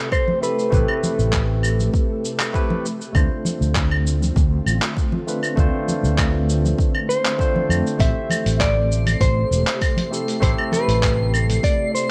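Wistful and smooth, this sunset chillout excerpt moves at 99 BPM in A minor, drifting from Am9 to Dm7 and back under an airy, detuned pad with ensemble chorus and a barky tine electric piano lightly overdriven through a combo amp with delay. A dark, clean, fingered electric guitar carries the melody with delay, sounding briefly at the start and returning at 7.1 seconds. Underneath, a growly fretless electric bass sits up front over an overdriven electronic kick, a gritty, tape-warm sampler-style kit of claves, handclaps, hi-hat and shaker, and soft-handed vintage congas in the background, while a sparkling granular texture with an octave-up shimmer joins at 9.0 seconds, all in a light reverb.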